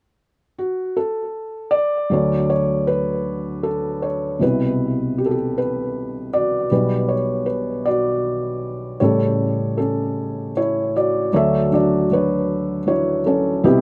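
This acoustic folk-pop ballad in D major is an intimate, heartfelt piece, moving slowly at 52 BPM in a straight 6/8 and tuned to A4 = 441 Hz. A felt-muted upright piano plays alone from 0.6 seconds to the close at 13.8 seconds, spanning A1 to E5 with a soft, dark, thick-felt tone that sits up front. A slapback echo trails the piano, lending its smooth, vintage character a faint doubled edge. After an unaccompanied opening, the harmony moves through Dmaj7, Cmaj7, Gmaj7/B and A7 before settling back on Dmaj7 at 11.3 seconds. The recording was made outdoors and is dry, with little reverb, so the mellow piano feels close and private, as if played for a single listener.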